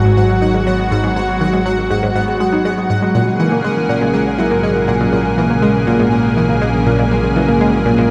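This mysterious, expansive slice of sequencer-driven space music opens with every part sounding at once, bathed in a huge, wet ambient reverb. Up front, a lush, thick unison pad of detuned sawtooth and square waves holds sustained chords with a slow attack and chorus. Alongside it, a nasal, round analog pluck with a noise layer plays a riff through chorus, phaser and tape echo. Further back, a ringing concert harp adds fingerpicked arpeggios carried on tape echo. A high, tempo-synced gated texture pulses with its own reverb, while a warm analog drone of sawtooth and pulse waves evolves underneath through pulse-width modulation. The harmony moves from G#m7 to A#m7 at 3.1 seconds, and a filter sweep shapes the synth arpeggio sound across this 8.1-second cut from a longer piece.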